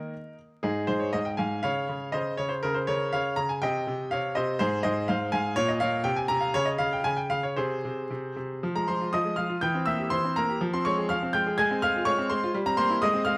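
A lone baby grand piano opens on a high Eb, beginning this excerpt from a classical-period sonatina in 2/4 at 121 BPM, played with a flexible, rubato feel. The mood is restless and serious. The music sets out in Ab major, turns to F minor at 4.6 s, and a second section beginning at 8.6 s stays in the minor, moving between F minor and C7 harmonies. The piano spans Ab2 to Ab6 and sounds clear, intimate and natural, sitting up front with audible action noise from the instrument. Close, detailed microphones capture it in light reverb, with vinyl crackle also audible, until the passage breaks off at 13.4 s, cut from a longer piece.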